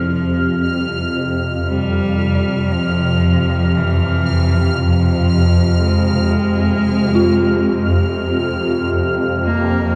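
Dark ambient drone in free time, desolate and tense, cut from a longer piece: a swarming, detuned drone sits up front, granular and warbling with a phaser, while a single bowed cello carries a smooth melody with vibrato through delay. Behind them an eerie, inharmonic FM synth bell plays mellow arpeggios through chorus, shimmer reverb and delay, and a bubbling, resonant sawtooth texture steps through random filter changes high above. A huge ambient reverb with an 8.2-second decay surrounds the whole.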